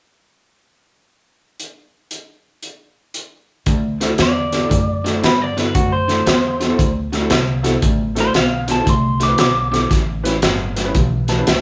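Soulful and swaggering, this electric blues shuffle in D mixolydian moves at 115 BPM with a swung eighth-note feel, opening on a gritty, up-front breakbeat drum kit with a punchy kick and dark, rolled-off top that plays alone until the band arrives at 3.7 seconds over a D7 chord. An overdriven semi-hollow guitar riff and a thumpy, woody upright bass played pizzicato enter together, joined by a boxy grand piano in the background, while a slightly broken-up, lo-fi lead guitar carries the melody until 9.9 seconds, when the harmony shifts to A7. The piano adds a fill from 10.9 seconds in this live-in-one-room recording with light reverb, cut from a longer piece.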